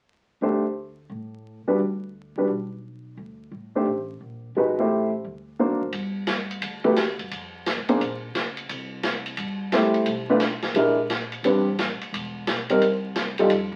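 Swinging and energetic, this short big-band jazz clip opens with a smooth, vintage-toned grand piano comping up front over a woody, pizzicato upright bass, moving through colorful harmony such as Daug7, Bb7#11 and Am11. At 5.9 seconds a natural-sounding drum kit joins with a punchy kick, medium-tuned snare, hi-hat and ride. The whole thing carries the crackle of a very old 78 rpm record, set in a wet studio reverb.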